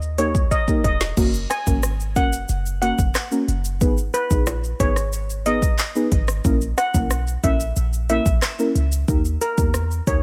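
Hypnotic and sultry, this dancehall excerpt moves at 91 BPM in G# minor, built on a layered electronic deep house drum kit with a deep kick, woody snare and smooth hats up front, plus a brief drum fill from 0.5 to 1.2 seconds, under a clean, boomy 808-style sine bass. A metallic, shimmering steel pan carries the lead through tape echo. Soft, detuned chord stabs, dark and wave-folded with chorus, fill in the harmony, while a close, ringing egg shaker and timbales enter in the background at 1.2 seconds, all set in a digital ambience.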